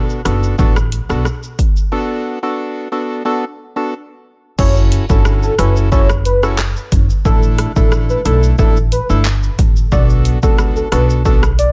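A velvety, detuned synth lead with chorus, tape echo and vibrato enters at 4.6 seconds to carry the melody in this sultry, hypnotic dancehall excerpt at 90 BPM in B minor. Beneath it, a woody, thumpy upright bass and a punchy, layered electronic drum kit of kick drum, handclaps, rim click, hi-hat, shaker and crash cymbal sit up front, while a hollow, percussive organ stab with chorus accompanies from the start over chords moving from Bm7 through F#m7 and Asus4 back to Bm7. A break arrives at 1.9 seconds, and digital ambience with a dulled top end surrounds the whole excerpt.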